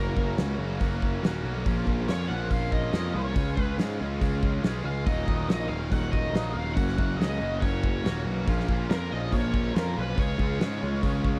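Dry, close 1970s-style studio sound frames this gritty, swaggering classic rock excerpt, where a dark octave-fuzz lead guitar carries the melody through wah, distortion and slapback echo over a sludgy, bright distorted riff guitar, a biting overdriven guitar tucked in the background, an up-front round fuzz bass, and a big rock drum kit that enters at 0.2 s with a fat snare and punchy kick.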